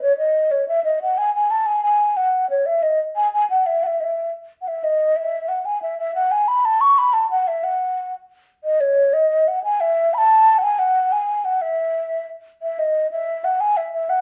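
A mellow, hollow wooden flute plays alone and up front, with airy tone, gentle vibrato and soft attacks, through this cheerful, lively Celtic folk excerpt in E major, moving at 121 BPM in a straight 6/8 lilt across a high register from C#5 to C#6, captured live in a studio room with wet reverb.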